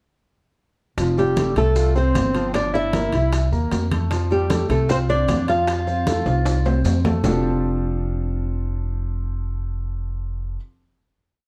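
A lively, sophisticated Afro-Cuban jazz piece in F major at 153 BPM opens at 1.0 seconds with the full rhythm section: an up-front, woody upright bass playing a pizzicato tumbao that anticipates the chords, an intimate baby grand piano with audible action noise laying down a montuno in octaves, and a percussion bed of congas, bongos, timbales and maracas. The congas sit in the background with thick-skinned slaps and open strokes, the very quiet bongos keep steady eighths alongside a hand bell, the metal-shelled timbales ring out a shell pattern and bell, and distant, grainy maracas shake in a large room. A fingerpicked flamenco guitar with fresh strings carries the motif-based melody in sentence-like phrases, while a tenor saxophone adds a roomy second line with vibrato, subtone, scooped notes and octave doubling. The harmony moves from Fadd9 through Gm7 and C7#9 to F69, and a drum fill from 6.3 to 7.2 seconds closes the main section as the percussion drops out. 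Piano and bass then sustain a final chord until 10.6 seconds, all within a dark production touched by light reverb.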